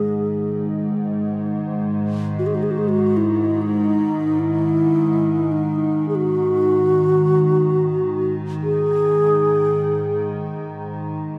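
Awash in a wet church reverb, this haunting, spacious excerpt of world meditation music floats in free time. A mellow, hollow xiao carries the pure bamboo melody up front with vibrato, a soft attack and a diffuse ambient delay, while an evolving, detuned wavetable pad drones low with chorus. A glassy, ethereal glass harmonica adds a dark, smooth tone until 3.7 seconds, the xiao ends at 10.3 seconds, and the pad sustains on alone to 11.4 seconds.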